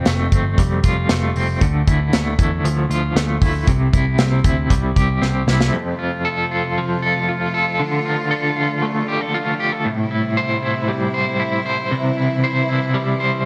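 Nostalgic and bright, this jangly indie pop excerpt moves in a straight 4/4 through a chord cycle built on F that passes through D minor, A minor 7 and C. An up-front, twangy electric guitar at the edge of break-up plays picked arpeggios from start to finish, its compressed tone coloured by tremolo and digital delay. For the first 5.7 seconds, a dark, round, foam-muted picked bass sits under a polished acoustic drum kit with an airy small-room sound, a tight kick and a medium-tuned snare, and the kit closes its run with a drum fill. At 5.8 seconds a lush, bowed string section takes over the support, holding smooth sustained chords with vibrato beneath the guitar. The whole track carries light reverb and the worn, warbling pitch drift of old cassette tape, which deepens its faded, memory-like glow.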